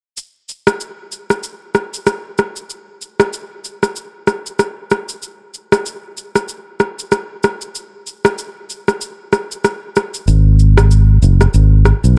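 An electronic shaker and rim click open this smooth, hypnotic afrobeats passage, sitting up front with a tape-warm, 12-bit sampler grit. The percussion carries a gentle sixteenth-note swing in a steady four, and for the first stretch it holds the groove entirely on its own. At 10.3 seconds the music moves into a new section as a fingered electric bass enters, round and direct, pitched low between F#1 and B1 and placed prominently in the mix. The bass stands louder than the percussion, giving the closing moments a dark, weighty foundation until the cut at 12.2 seconds. The production is dry and shadowy, keeping both parts close and present, and the passage is lifted from a longer piece.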